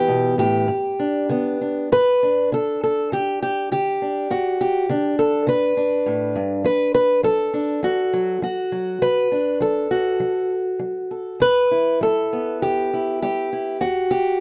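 Loosely rubato around 101 BPM in 4/4, this gentle folk fragment in G major features a lone fingerpicked acoustic archtop guitar, up front with audible finger squeak and a touch of light reverb, ranging from E2 to B4 as it moves from Asus2 through G, D/F# and Emadd9 over its 14.4 seconds.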